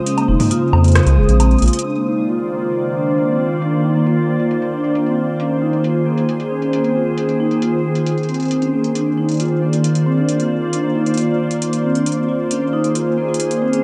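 A glassy FM pad holds sustained, chorus-washed chords through this melancholic, glitchy IDM piece at 135 BPM in C minor, joined by ringing soft-mallet vibraphone arpeggios and a low-pass-filtered electro analog drum machine with metallic hats. A rubbery square bass and a faint bubbling stepped-filter texture appear only in the opening seconds, around a drum fill at 1.6 s that gives way to filter sweeps on drums and vibraphone from 1.8 s, the whole set in a dark production with a lush hall reverb.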